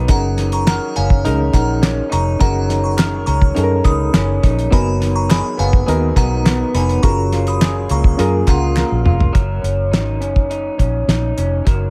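Nostalgic and sunny, this short indie and bedroom pop cut moves at 104 BPM in F# major, with a cloth-damped, thuddy drum kit and a round, foam-muted vintage bass sitting up front while an electric guitar through a small old amp adds slightly broken-up, lo-fi accompaniment with subtle chorus and vibrato. A reedy, worn electric piano with fast tremolo and a glassy FM synth bell carrying a second line through tremolo, chorus and digital delay both drop away by 9.4 seconds, and crisp group handclaps sit in the background. A drum fill at 8.8 seconds leads into a sparer closing passage of guitar, bass and drums, all in a light studio reverb over chords that move from F#6 through G#m7/F# and F#maj9 back to F#6.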